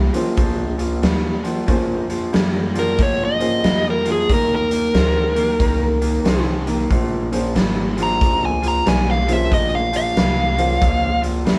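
A slightly broken-up, lo-fi electric guitar riff and a growly pizzicato upright bass open this soulful, smoky electric blues shuffle in Bb minor at 92 BPM, with a boxy upright piano and a raw garage drum kit with a punchy kick and rolled-off top joining at once, before a dark, overdriven lead guitar takes the up-front melody from 2.8 seconds, all captured as a band playing live in one room with little reverb in a short cut from a longer piece.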